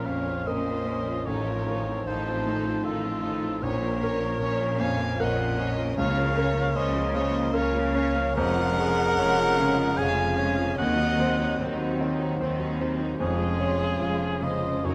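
A rubato 3/4 pulse at 75 BPM carries this lyrical, passionate romantic movement for piano and orchestra, where a clear, up-front concert grand with deep bass sings the melody over a background violin section, a mellow cor anglais and expressive close violins weave second lines, lush violas accompany, dark, very quiet horns sustain chords, cellos and double basses hold the bass, and a very quiet timpani sounds on Db from 6.0 to 7.1 seconds, all in a moderate concert hall reverb as the harmony turns from Bb minor to Db major at 8.4 seconds.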